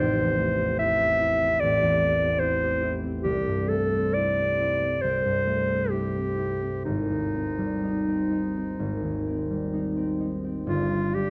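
Wistful and hazy, this short classical fragment is an impressionist duo in 4/4, drifting with rubato at around 60-76 BPM and tuned to A4 = 437 Hz. A warm clarinet with a smooth top carries the solo melody up front, while a mellow, thumb-plucked concert harp rings beneath it in accompaniment, both sounding together from 0.0 to 11.3 s. The harmony moves from Am7 to C69 to Abmaj7 before falling away at 10.7 s, all set in a dark production with a moderate recital-hall reverb.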